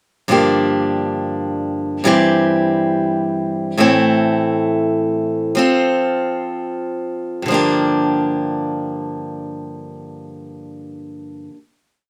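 This short acoustic folk piece in G dorian moves in free time with a reflective, melancholic mood. A single picked steel-string acoustic guitar carries it alone, sitting up front with a warm, concert-like tone and slow strumming across open chord shapes between G2 and A4. The harmony passes from Gm7 through C/G, Am and F, and the playing slows down from 3.8 seconds as the interlude draws to a close. At 7.4 seconds it settles back onto Gm7, which rings as a final chord until 11.4 seconds. A moderate studio reverb surrounds the guitar, and the rough home demo mix gives the whole piece an intimate, unpolished feel.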